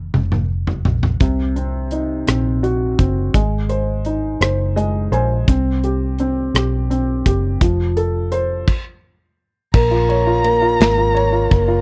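Dramatic and aching, this short six-eight pop ballad in Bb minor moves at a slow 56 BPM, opening with a drum fill on a tight, rolled-off studio kit over a dark, foam-muted electric bass, joined at 1.2 seconds by a boxy, felt-muted upright piano with audible action noise that plays its own fill before a stop at 8.7 seconds, after which a distant, woody erhu enters at 9.7 seconds with vibrato and portamento, all in a dry, close 1970s-style studio sound.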